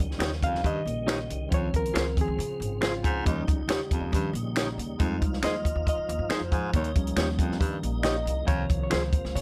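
A straight 4/4 pulse at 138 BPM drives this joyful, uptempo 1960s-style soul excerpt in Eb mixolydian, cut from a longer piece and built on a compact cocktail drum kit, dry and up front, with a high-tuned snare, punchy kick and hi-hat. A pizzicato upright bass with steel strings adds a woody bottom, while finger snaps sit in the background from 0.2 to 9.0 seconds. Taking the solo throughout is a barky, reedy electric piano, lightly overdriven through its built-in speakers, and behind it a tonewheel organ holds full sustained chords with chorus vibrato and a slow rotary speaker. A dark, clean, fingered electric guitar adds stabs, and a breathy baritone saxophone plays a low riff with soft attacks, scooped notes, light vibrato and a whispered, intimate jazz tone. The chords move between Eb7, Dbmaj7 and Fm7, and the dry, close sound keeps the whole band immediate.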